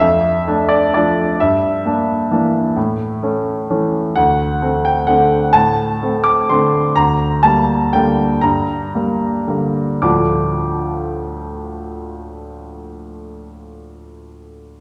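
Wistful and nostalgic, this classical piano waltz in D minor moves in 3/4 with a rubato feel, its tempo drifting between 104 and 137 BPM and slowing from 6.3 to 10.0 seconds before a new passage begins on a D minor chord. A clear grand piano plays alone, sitting present and up front while spanning D2 to D6 through harmonies such as Em7b5/G, A, D7 and Gm/D. Wet concert hall reverb with a 1.9-second tail surrounds it, and the recording is cut from a longer piece.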